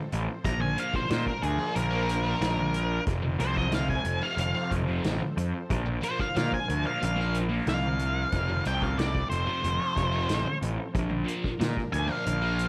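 Psychedelic rock with a kaleidoscopic, hypnotic mood, cut from a longer piece, where a dark, up-front octave-fuzz lead guitar solos from 0.5 seconds with distortion and slapback echo over a bright, double-tracked thick fuzz guitar riff colored by phaser. Beneath them, a round, punchy overdriven fuzz bass sits forward while a soft-mallet drum kit of hi-hat, punchy kick and medium-tuned snare sounds distant and roomy. A vintage sawtooth string machine voicing violas holds soft-attack sustained chords with ensemble chorus in the background, alternating between Bbadd9 and F under a generous studio reverb.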